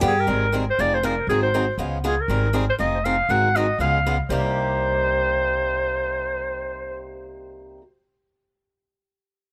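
Lightly reverberant and fiery, this virtuosic cut from a longer jazz manouche piece puts a clear, forceful clarinet up front, its vintage, scooped, vibrato-laden solo riding tape echo over a bright, boxy picked swing guitar and a woody, thumpy gut-string upright bass, while a parlour-style steel-string guitar with fresh strings sits in the background and adds a second line briefly at the very start and again from 4.3 seconds as the harmony moves to Cm7.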